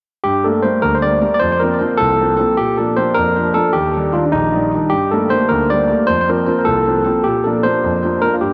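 Celtic folk in the form of a jig, this short excerpt cut from a longer piece moves in 6/8 at 103 beats per minute with a straight, spirited feel in G minor, carrying a wild energy. A barky tine electric piano takes the melody from 0.2 to 8.5 seconds, its bright, clean, direct tone sitting up front and trailed by a delay. A grand piano supplies the accompaniment across the same span, clear and present, reaching from deep Bb1 up to D5. The harmony circles through Gmadd9, Fsus4, Bb and Ebmaj7 before returning to Gmadd9, Fsus4 and Bb. A cavernous church reverb soaks the whole mix, giving the lively dance a dreamy, hazy glow.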